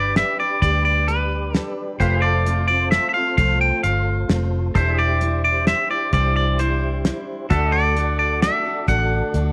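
Easygoing and sunny, this short excerpt of honky-tonk and classic country rolls along in 3/4 at 131 BPM in G mixolydian, moving through G, F, Cadd9/E and D. A bright, twangy electric guitar carries the melody up front over a round, foam-muted fingered bass, a picked dreadnought acoustic guitar and a cloth-damped drum kit with a fat snare, tight kick and rolled-off top that enters at 0.2 seconds. In the background, a pedal steel guitar holds sustained chords with volume swells, slide and lush chorus, and a clear tonewheel organ with slow rotary speaker and chorus vibrato adds a fill at 9.3 seconds, all set in light studio reverb.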